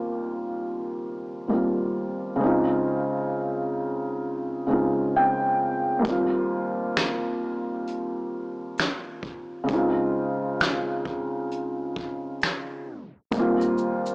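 A soft, felt-muted upright piano with a dark, mellow cassette-tape tone carries this dreamy, cosy lo-fi hip hop excerpt in swung 4/4 over Eb69 and Dbmaj9 chords, slipping in a fill at 4.7 seconds before a vintage brush kit of fat snare, punchy kick, hi-hat, shaker and finger snaps joins at 6.0 seconds with a roomy, rolled-off feel, the whole mix wrapped in light reverb and a small-speaker sound until a tape stop at 12.9 seconds.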